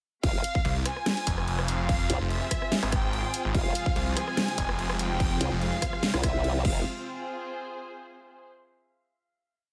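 Menacing and heavy, this short wobble dubstep piece in F harmonic minor drops straight in at 0.2 seconds at 145 BPM with a half-time feel. A punchy, overdriven electronic kick and a dubstep kit with a huge snare, hi-hats, rim clicks and crashes drive a formant-sweep wobble bass with chorus and changing wobble speed, while a snarling, growling distorted saw bass adds chopped phrases that answer it. Above them a dark, woody violin section repeats a riff with 12-bit sampler grit and dub echo, veiled muted strings shift slowly beneath with sidechain pumping, lush supersaw chords join in the background at 3.5 seconds, and the muted strings hold a final F minor chord alone from 6.9 seconds in a dry mix.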